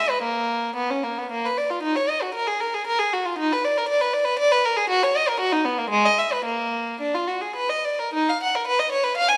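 A lone bowed violin opens this brief cut from a longer piece, a baroque-style suite movement for unaccompanied violin in E-flat minor. The mood is solemn and grave, moving in 3/4 at roughly 103 to 121 BPM with a flexible, rubato feel. The single player, in period style, draws a rich gut-string sound with a reedy edge, ranging from G#3 up to Ab5. The instrument sits close and up front, while a moderate recital hall reverb of about 1.5 seconds surrounds it. The violin plays alone for the full 9.4 seconds, returning to its opening material at 8.1 seconds.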